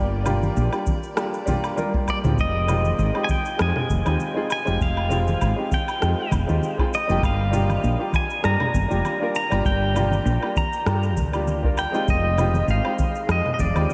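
This wistful sunset chillout fragment opens with a twangy pedal steel guitar carrying the melody up front, its fingerpicked slide lines shaped by volume swells and a diffuse ambient delay. Beneath it, a concert grand piano with deep bass and short sustain lays down accompaniment on an Fm9 chord, sharing that same delay, while a growly, round fretless bass sits forward in the mix. At 0.3 seconds a smooth R&B drum kit with a large-room character joins, adding rim clicks, shaker, toms and woodblock, alongside soft-handed vintage congas tucked in the background. A deep analog electronic kick arrives at 0.9 seconds, and a brief drum fill follows at 1.8 seconds. The groove sways with a light swing on the sixteenths, and the whole dreamy mix is soaked in a huge, long reverb with a gently darkened top end.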